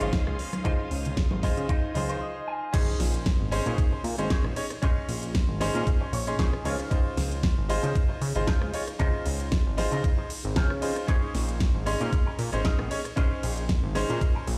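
A dry, stone-room sound opens this sleek, cosmic nu-disco excerpt in Bb minor at 115 BPM with a light 16th-note swing, where a fat, wave-folded analog bass and a knocking electronic kick sit up front beneath a pop kit with a fat snare and crisp hats, a brilliant grand piano with audible action noise, and a twangy, clean envelope-filtered guitar riff with lush chorus and tape echo, while biting bowed strings and background congas appear only until about 2.2 seconds before a brief break gives way at 2.7 seconds to a drop marked by a very quiet electronic impact, the chords moving between Dbmaj9 and Bbm11.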